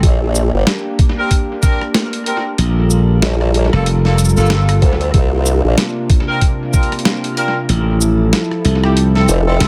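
A swaggering, gritty glitch hop groove at 94 BPM in G dorian opens with a mellow, detuned sawtooth pad pumping under sidechain, a wobbling formant-filtered bass with chorus, a pitched-down, tape-warm sampler drum kit of hi-hat, rim click, shaker and snare soaked in tape echo, and a thumpy electronic kick up front until 6.9 s, while a distant, loose horn section adds vibrato stabs from 1.2 s and a growly, punchy slap bass joins at 2.6 s over Bb69, Gm9, C9sus4 and Fmaj7 chords in an echo-heavy mix with light reverb and digital ambience.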